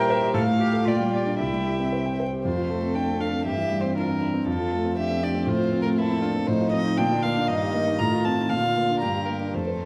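A quick, spirited and cheerful classical-period movement for piano quartet in 2/4 at 118 BPM, shifting from F major to Bb major at 6.5 s and cut from a longer piece, in which a pure, floating violin with a smooth top carries the melody sul tasto over a dark, woody second violin with vibrato and a rich cello sitting in the background, while an up-front concert grand with deep bass, long sustain and audible action noise gives intimate accompaniment, heard in a wet recital hall amid vinyl crackle.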